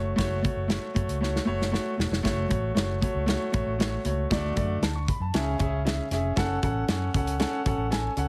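A straight 4/4 pulse at 116 BPM drives this short, uptempo cut of 1960s-style soul, joyful and warm in mood, lifted from a longer piece. A natural acoustic drum kit of hi-hat, punchy kick and medium-tuned snare sits up front from 0.2 seconds, playing a fill between 1.2 and 2.2 seconds before settling into the next section. Underneath, a vintage fingered electric bass, foam-muted and amped, gives a dark, round low end from E1 to F#2. A concert grand piano plays the accompaniment up front, intimate and boxy with deep bass, long sustain and audible action noise, moving through F#m, D and C#m before returning to F#m. The whole performance sits in a small room and comes across as a heavily compressed radio sound, marked by lossy compression artefacts.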